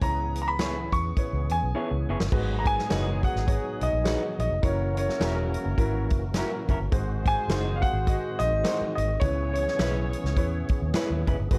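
A dark, warm small-room sound frames this urgent, driving slice of uptempo 1960s-style soul, swinging at 104 BPM in G# minor. Up front, a punchy big-band drum kit with crash, hi-hat, kick and a medium-tuned snare drives the groove alongside a round, foam-muted electric bass. A clear grand piano carries the melody high above a woody upright piano accompaniment, while a fat, key-clicking tonewheel organ sits in the background with sustained chords, overdrive, chorus vibrato and a slow rotary speaker. A lo-fi, slightly broken-up electric guitar adds picked, compressed stabs with slapback echo. After a drum fill at 1.8 seconds, a mellow, roomy horn section in tight octave doubling enters at 2.3 seconds with a second line, joined at 2.6 seconds by a ringing soft-mallet vibraphone, as the chords move from G#m7 through F#7 and G#7 back to C#m7.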